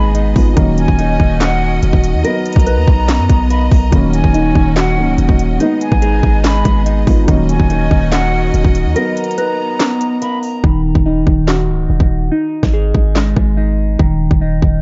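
Melancholic and menacing, this trap excerpt moves at 143 BPM in a half-time feel, set in Eb minor and cut from a longer piece. Hard-clipped kick, sharp snare, crisp hats and handclaps from an up-front electronic kit drive it alongside a deep, boomy 808-style bass with a sine tone, a noise layer and a fast, decaying attack. A clean, fingered electric guitar plays dark arpeggios through phaser and analog delay, while a dark, boxy grand piano with audible action noise accompanies with delay of its own. Bowed strings hold lush, biting chords with vibrato, and a pure, soft-attack silver flute adds a second line through analog delay. The flute, piano and strings stop around 10.6 seconds after a break from 9.0 seconds, leaving guitar, bass and drums with muted hi-hats until the chords give way at 14.0 seconds, all inside an echo-heavy, dusky mix.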